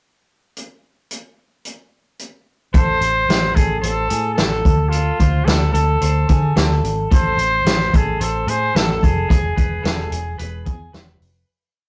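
Jangly indie pop in A harmonic minor at 110 BPM, bittersweet and wistful, where a punchy, rolled-off vintage drum kit opens alone with a brisk backbeat before a clear, scooped solo trumpet sings a motif-based melody at 2.7 seconds over a dark, foam-muted bass driving eighth notes with slides and a twangy, slightly broken-up guitar ringing arpeggios through spring reverb, moving from Am to Dm and back before landing on E as the whole piece fades out from 9.3 seconds in a rough, saturated rehearsal-room sound.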